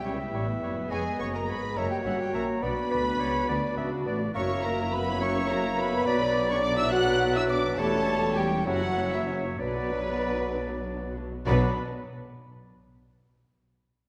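In a straight 6/8 pulse of 63-70 BPM counted in dotted quarters, this restless, urgent classical-period excerpt in B minor sets a veiled, con sordino violin section on the melody, backed by a second muted violin line, muted violas, and cellos and double basses holding the bass beneath dark French horn chords. A pure flute, a bright oboe, a clear clarinet and a mellow, roomy bassoon fill in the inner lines, circling harmonies such as C#dim, F#7 and Bm. The orchestra slows between 6.9 and 11.5 seconds, all bathed in a wet concert hall reverb.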